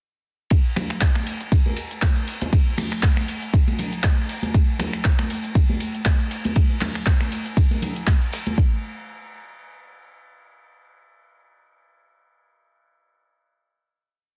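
House groove with a soulful, relaxed mood, built entirely from drums and percussion with a gentle swing on the sixteenths. At its core a deep house kit, electronic and up front, lays down a four-on-the-floor pattern with a deep kick and open hats. A second layer of that kit adds programmed closed and half-open hats, cabasa, finger snaps and handclaps on the backbeat, its metallic hats carrying a tape-warm sheen. Beneath them sits a damped 70s acoustic kit, dry and quiet, playing a looped breakbeat with edits, with dark cymbals, a fat snare and ride, all thinned by high-pass filtering. Congas arrive at 0.8 seconds, bright and high-tuned with a thin skin, playing syncopated mutes and high and low tones that sound distant in a large room and pump under sidechain compression. The groove runs as one drop until 8.6 seconds, then a final hit rings out to 10.6 seconds through a small room reverb and a dense, heavily limited master.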